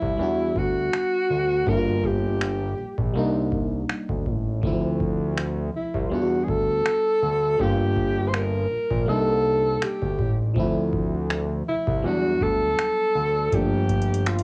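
A mellow alto saxophone opens over glassy FM electric piano, fat analog bass and a booming analog drum machine, all sounding together from the first moment of this sensual, moody contemporary R&B passage cut from a longer piece. The saxophone carries the melody up front with vibrato, subtone, scooped notes and a smooth top, its jazz-style solo line bathed in plate reverb and analog delay. Beneath it, the electric piano's bell-like attack and warbling, vintage tone sit further back, colored by chorus, cassette tape character and plate reverb as it traces a cycle through Em9, Gm7, Cm9 and Dm9, arriving on Gm9 at 13.5 seconds. The thick, detuned bass is saturated and nasal, with a fast attack and sustained, evolving notes that hold the low end firmly. The drum machine pairs a deep kick with metallic hi-hats and finger snaps under a lightly swung sixteenth-note feel, its sound also passed through cassette tape. 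The whole passage has the intimate feel of a home cassette recording in a small room with moderate studio reverb.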